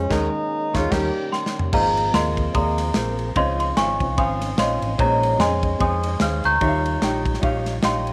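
A swung 4/4 groove at 148 BPM drives this uplifting, hopeful slice of uptempo gospel in Ab major, with a tight-kicked, polished studio drum kit and a round, punchy hollow-body electric bass anchoring a dark, mellow grand piano and a very quiet, percussive tonewheel organ with key click and fast rotary swirl. A subtoned tenor saxophone with scooped notes opens the melody over a band accent and a soft, loose French horn section, then a drum fill at 1.3 seconds hands the tune to a bell-like, slightly out-of-tune celesta that sits up front through the rest of the passage. Moderate plate reverb and a small room give the sound a gentle sheen as the chords move from Ab69 through Dbmaj9 and Bbm11 to Eb9.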